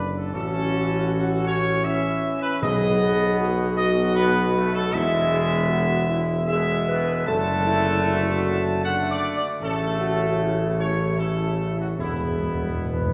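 A solemn, triumphant classical brass chorale in E major at 78 BPM in 3/4 opens with the trumpet section carrying the melody up front, over sustained chords from a punchy, smooth-topped French horn section with light vibrato and a distant, roomy trombone section, while a mellow solo tuba anchors the bass. Timpani with medium mallets sound close and dry, striking briefly at 2.6 seconds and returning for a fill at 12.0 seconds, as the harmony moves from A through B, E and D/F# back to A and E. The music is heard from further back in a wet scoring-stage reverb, and this passage is cut from a longer piece.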